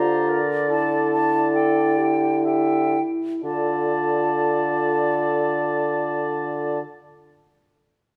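In a rubato three-four lilt that slows over the first 3.4 seconds, this melancholic, yearning fragment of a slow romantic movement for wind quintet sets an airy silver flute melody with expressive vibrato and soft attacks above a warm oboe second line, a distant, roomy French horn and very quiet clarinet in accompaniment, and an up-front, smooth-topped bassoon holding the bass, in light reverb.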